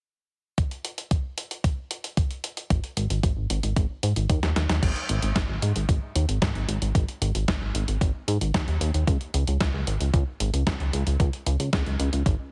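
A straight 4/4 italo disco groove at 113 BPM kicks in at 0.6 seconds, with a thumpy, sampler-style electronic kick sitting up front beside a clean 12-bit drum machine playing crash cymbal, hi-hat and a medium-tuned snare, both re-recorded in a small room for a tape-softened edge. At 2.7 seconds a retro chorused synth bass arrives up front, moving between G#1 and G#2 with a glossy, mellow tone built from pulse, sawtooth and triangle waves, pulse-width modulation and ring modulation, shaped by a fast attack, a filter pluck and sustained notes. A drum fill at 4.4 seconds leads from the opening section into the longer second part. The mood is danceable yet bittersweet, and the whole mix carries light reverb and a heavily compressed, radio-like sound with a dulled top end. This is a short cut from a longer piece.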